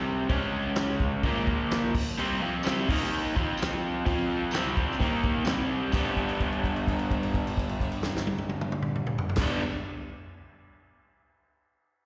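A crunchy, double-tracked overdriven guitar riff with slapback echo opens this rowdy, raw garage rock excerpt at 128 BPM in G mixolydian, joined almost at once by an up-front vintage drum kit with a punchy kick, medium-tuned snare, toms and crash, while a jingly tambourine sits in the background from 2.6 to 6.1 seconds before a held note rings out from 5.9 seconds over the live gig sound of a venue PA in recital hall reverb.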